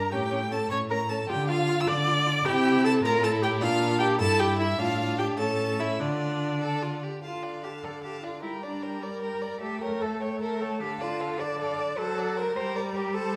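A stormy, urgent string quartet movement in the classical style, cut from a longer piece, opens with a rich, bowed first violin melody over a focused, up-front viola accompaniment and a smooth, vibrato-laden cello bass, and the quartet is completed at 0.1 s by a clear, close second violin line, at a quick 102 BPM in 6/8 in D minor through chords such as A7, Dm and Gm, in the wet reverb of a recital hall.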